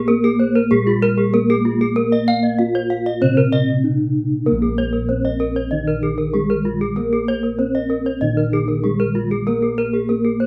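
Balinese gamelan with a shimmering, brilliant mood, cut from a longer piece, where a mellow bronze metallophone carries the melody over a softer, band-limited metallophone accompaniment in the background and round, beating bossed gongs in the bass, while two bright, airy horn-mallet metallophones, one up front, spin arpeggios above with the paired tuning's shimmering beats, all recorded outdoors with little reverb.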